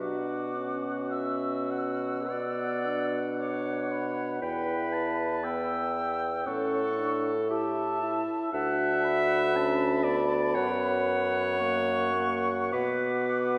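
A slow, melancholic and elegiac wind quintet fragment in B minor opens with all five players together at a rubato 49-60 BPM in 4/4: an airy, expressive concert flute carries the melody high above a mellow oboe second line with light vibrato, while a warm clarinet sits up front and a distant, roomy French horn fills out the accompaniment over a smooth-topped bassoon bass, all moving from Bm through Em, A and D toward F# and back to Bm by 12.7 seconds, bathed in a long, wet scoring-stage reverb.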